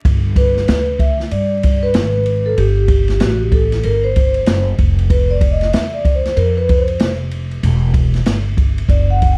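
An open jazz drum kit starts this smooth, swung jazz-hop excerpt at 95 BPM in G major, with dark cymbals, a medium-tuned snare and a boomy kick sounding roomy. A woody pizzicato upright bass joins at 0.1 seconds, and at 0.4 seconds a mellow, ringing vibraphone played with soft mallets and a slow motor vibrato takes a solo over the chords G, C5/G, Dm13/F and Emadd9. The dark production is dry and warm, with a bed of vinyl crackle.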